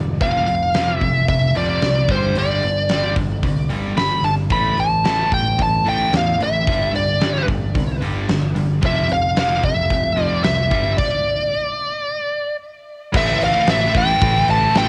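A straight 4/4 pulse at 111 BPM drives this menacing, aggressive hard rock excerpt, where a big-room drum kit with a fat snare and punchy kick backs a bright, growly picked bass and two overdriven rhythm guitars, one sludgy and very quiet, cycling through F5, G5 and A5 power chords, while an up-front, smooth lead guitar colored by tape echo sings between C5 and B5, everything pauses for a stop from 11.0 to 13.1 seconds, and a tight, double-tracked distorted guitar joins on an A minor chord at 13.1 seconds, all wrapped in studio reverb with the hazy character of a home cassette recording.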